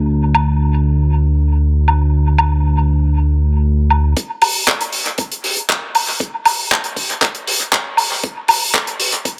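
A fat, sawtooth analog bass opens this sunny, groovy nu-disco passage at 118 BPM, sitting up front with sidechain pumping, and a dry, airy 70s drum kit of handclaps, hi-hat and woodblock joins almost at once, touched by dub echo and studio reverb. The bass drops out at 4.1 s, and from 4.2 s a gritty, overdriven electronic kick enters low in the mix as the music builds. The echo-heavy mix keeps the reverb light, and the passage is cut from a longer piece.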